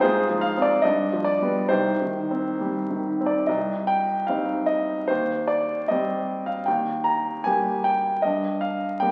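A very old 78 rpm record carries this short fragment, its vinyl crackle hovering around a clear baby grand piano set in a wet recital hall reverb. It is a romantic character piece for solo piano in C minor, brooding and bittersweet, moving at 66 to 78 BPM in 2/4 with a freely breathing rubato. The piano sounds present, polished and up front despite the aged surface, spanning C2 to Bb5 across its range. The opening passage runs to 3.5 seconds, drifting from Fm over Ab through G7 to settle on Cm, before a second passage turns toward Cm over Eb and a brief Eb. It closes on an open G7 at 8.2 seconds, leaving the phrase suspended as the fragment, lifted from a longer piece, breaks off at 9.1 seconds.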